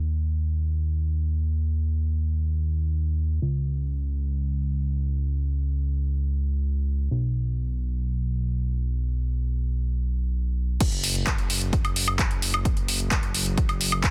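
In free time, this anthemic, euphoric festival progressive house excerpt opens on a fat, detuned sawtooth bass alone, sitting up front with sidechain pumping and a filter sweep on its sustained low notes. At 10.8 seconds the drop arrives: a punchy, tape-warm electronic kick with studio reverb joins a layered, overdriven big-room kit of crash cymbal, handclaps, woodblock and metallic, low-pass-filtered hi-hats. It all plays through to 14.1 seconds in a dense, heavily limited modern mix with a digital ambience.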